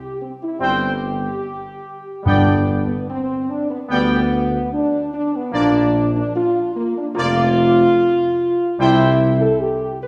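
Classical brass in C major at 73 BPM, majestic and triumphant, this brief passage cut from a longer piece opens with a dark, up-front French horn section holding sustained chords from 0.0 s, joined at 0.6 s by a clear, distant trumpet section carrying the melody, a bright trombone section sustaining chords in the background, and a mellow tuba on the bass line. Timpani struck with hard mallets on calf heads sound a close, articulate G2 between 2.3 and 3.5 s, while the harmony moves through C5, G, Bb and back to C5. The whole ensemble sits back in a wet scoring-stage reverb, heard from further back in the room.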